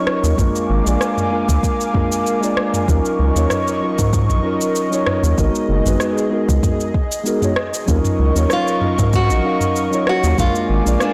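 A blown-out, overdriven recording sits in light reverb and digital ambience, giving this relaxed, smooth sunset chillout passage a gritty haze around its soft edges. At 96 BPM in 4/4 with a gentle 16th-note swing, the piece in Eb minor moves through Bb7, Ebm7, Abm7 and back, with a mellow tine electric piano playing up-front, clean accompaniment through a delay while an airy, breathy pad holds detuned, nasal chords with chorus, a noise layer and a slow attack. Up front in the mix, a round analog bass sits deep, dark and forward, its wave-folded tone pairing a fast attack with long sustain. An electronic kick drum and a smooth R&B kit with cabasa, rim click and toms share a tape-warm, produced character re-recorded in a large room, and soft clipping roughens the snare. At 8.5 seconds a bright, fingerpicked nylon-string guitar enters up front with a brief classical melody through delay, carrying the passage to its cut at 11.1 seconds.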